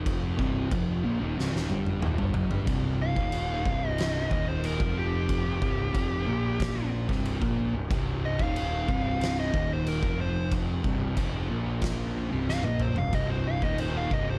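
A straight 4/4 pulse at 92 BPM drives this hypnotic, ominous stoner and doom metal excerpt in C minor, where a double-tracked, thick fuzz guitar riff sits up front alongside an overdriven, picked fuzz bass and an up-front, oversized low-tuned acoustic drum kit with a boomy kick, fat snare, dark cymbals and a pumping stone-room sound. A drum fill at 1.4 seconds leads into a compressed fuzz lead guitar solo with analog delay entering at 2.7 seconds, and a second fill lands at 12.5 seconds in a dark, dry production.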